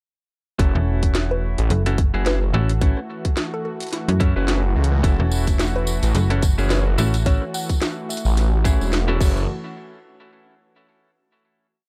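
A swirling, thick detuned saw bass soaked in phaser drives this swaggering, funky glitch hop piece at 108 BPM in F# minor, holding a single F#m7 while a snappy FM slap bass with a metallic attack answers it in chopped phrases above a tight, up-front electronic kick. A drum and bass kit adds a cracking snare, closed hats, rim clicks and crash in a swung beat with edits, and bright, clean semi-hollow guitar stabs and a smooth analog pad with chorus and tremolo both pump with sidechain. From the background, a woody wave-folded pluck with 12-bit grit and delay offers short answering phrases, a jingly tambourine joins at 5.0 seconds, and the dark production closes on a final hit at 9.5 seconds.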